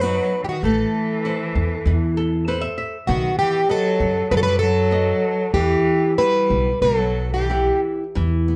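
Lightly reverberant and captured as a band playing live in one room, this longing, mournful fado-style ballad in E harmonic minor drifts in rubato around 89-99 BPM, with a shimmering, octave-doubled fingerpicked twelve-string acoustic guitar carrying the melody up front, a focused bowed cello with vibrato tracing a second line beneath it, a bright fingerpicked flamenco guitar accompanying, a woody, growly pizzicato upright bass anchoring the low end, and a brief nylon-string guitar fill from 1.9 to 3.1 seconds.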